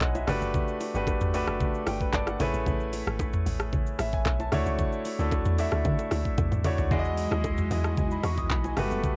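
Opening on a clear, intimate grand piano with audible action noise and cassette tape coloring, a deep, round log drum bass, an electronic afro-pop kit with knocking kick and metallic hats, and close, dry bongos and congas in the background, this relaxed amapiano excerpt at 113 BPM in E major moves through Gmaj9, Amaj9 and Dmaj9, with a piano fill at 1.6 seconds and a drum fill at 6.4 seconds, before vintage sawtooth string machine and cellos with ensemble chorus and sidechain pumping enter at 6.9 seconds on Emaj9, all in a lightly reverberant home cassette recording.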